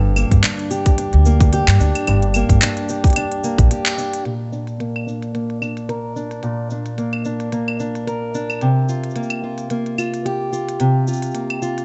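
Playful and hopeful, this folktronica piece moves at 110 BPM in Bb major with a gentle swing, led by a dark, boxy parlour-style fingerpicked steel-string acoustic guitar playing arpeggios over Gm, Bb and C7sus4, with finger squeaks coming through its low-pass filter and delay. A woody pizzicato upright bass and a tight, up-front electronic kick drum drive the opening until a short break at 3.7 seconds. Beneath them, a quiet organic electronic kit of claves, handclaps, crisp hi-hat and shaker, tape-warm and re-recorded in a large room, carries on to the end, while from 4.3 seconds a filter sweep shapes the guitar, and light reverb with digital ambience keeps the overall sound soft-topped and mellow.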